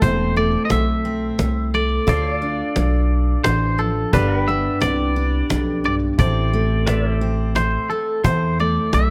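A twangy, compressed electric guitar carries the melody up front in this brooding, dusty honky-tonk and classic country excerpt, set in 3/4 at 88 BPM in A minor and moving through Am, Dm, G and back to Am. A thumpy pizzicato upright bass and a woody cajon played with soft hands hold the ground, while a picked dreadnought acoustic guitar adds warmth. Behind them, a pedal steel played with fingerpicks and slide adds bright sustained chords with volume swells, and a slightly detuned upright piano rings clear with long sustain, all in a dry, close sound.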